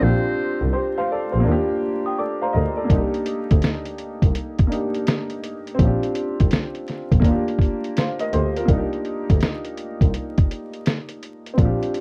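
Worn, warbling cassette tape with vinyl crackle and little reverb frames this cosy, nostalgic lo-fi hip hop passage cut from a longer piece: a buzzy, metal-muted trumpet note opens alongside a woody, slightly detuned upright piano and a dark, bowed double bass with a gut-string tone, a soft, bell-like celesta line glints in the background from 2.1 seconds, and a muffled, compressed sampler-style drum kit with a thumpy kick and fat snare enters up front at 2.9 seconds, swinging its sixteenths.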